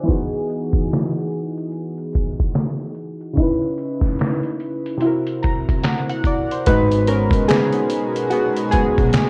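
Lo-fi hip hop excerpt at 73 BPM in G# minor with a melancholic, nostalgic mood, where chorused analog keys with a filter sweep carry Emaj7 and C#m7 chords over a gritty, pitched-down sampler-style kit of thumpy kick, snare, hi-hat and finger snaps, play a fill from 5.0 seconds and take a solo at 6.7 seconds as a woody pizzicato upright bass with tube saturation enters, while a blurred granular cloud pad drifts in behind from 7.7 seconds, all through a small room and warbling worn cassette tape.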